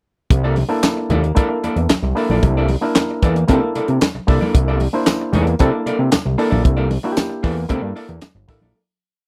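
A dry, close 1970s-style studio sound with light reverb frames this strutting funk piece in straight 4/4, which grooves from 0.3 seconds and fades out from 6.7 seconds. Up front, a tight acoustic drum kit with a high-tuned snare and tight kick lays down a heavy on-the-one beat with hi-hat and handclaps, while a fat, saturated analog bass, nasal and detuned, plays a syncopated riff anchored on the downbeat with muted ghost notes. A clean, picked hollow-body jazz guitar scratches out sixteenth-note funk rhythm, and an overdriven auto-wah clav, stringy and percussive through a combo amp, enters at 0.7 seconds with syncopated rootless chord stabs and grace notes. In the background, ringing medium-tuned congas played with soft hands slap on two and open up on four. A very quiet, jingly tambourine marks the backbeat, and the harmony opens on a C13 chord.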